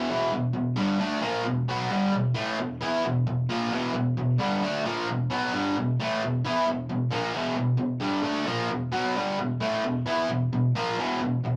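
Rock with an anthemic, energetic drive, this short excerpt features a lone electric guitar, crunchy and bright with overdrive, picked and double-tracked up front as it plays over an E5 chord and spans E2 to E4. The sound is a rough rehearsal-room capture with saturation and a moderate small-room ambience, and the clip runs 11.6 seconds, cut from a longer piece.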